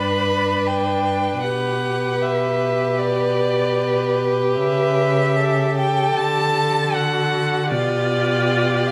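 In a flexible rubato 4/4, this slow romantic movement for string quartet unfolds with a warm, lyrical mood across a brief excerpt cut from a longer piece, with all four players sounding from the start. The first violin carries the melody up front with a rich, focused tone and vibrato, though it sits at a slight distance. Beneath it, the second violin plays a close, expressive second line with soft attacks and gliding portamento. The viola's accompaniment is also distant, colored by vibrato, while the cello anchors the bass up front and close, with its own vibrato and portamento. Each bowed part is a single player in a moderate recital hall reverb, and the harmony moves from G through A7/C# and D before arriving on G7/B at 7.7 seconds.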